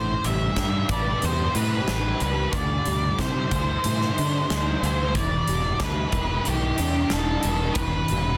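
Shoegaze-leaning rock and dream pop in a brooding, dreamy mood, moving at a steady straight pulse through Am9, D9sus4 and Em7 in this short section cut from a longer piece. A dark octave-fuzz lead guitar carries the melody with slapback echo, over a double-tracked, up-front fuzz guitar riff thickened by ensemble chorus, while a bright, direct fingered electric bass holds the low end. A huge arena drum kit enters at 0.2 seconds with hi-hat, a punchy kick and a medium-tuned snare in a pumping hall room, all sealed in a dense, heavily limited modern master.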